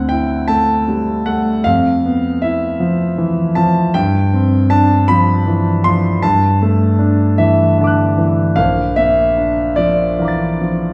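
Impressionist classical solo piano, mysterious and hazy, drifting in a rubato 6/8 at about 52 dotted-quarter beats per minute, as a clear concert grand with deep bass and long sustain moves through shimmering harmonies like D9, Fmaj7#11 and G7sus4 before settling on Bbmaj7 at 8.6 seconds, all bathed in the wet reverb of a recital hall heard from further back in the room in this brief fragment of a longer piece.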